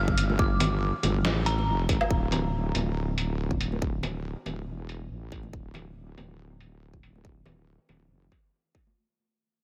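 Over a half-time 140 BPM groove with a light sixteenth swing, this cavernous, heavy deep dubstep fragment in G dorian sets a punchy, up-front electronic kick and a muffled, overdriven, pitched-down sampler kit of hi-hat, snare and woodblock beneath a saturated sawtooth-and-sine wobble bass, while an eerie, inharmonic FM synth bell rings out over Gm with dub echo until 2.1 s and ringing, band-limited congas echo in the background, all drenched in a huge ambient reverb as the whole cut fades out by 9.0 s.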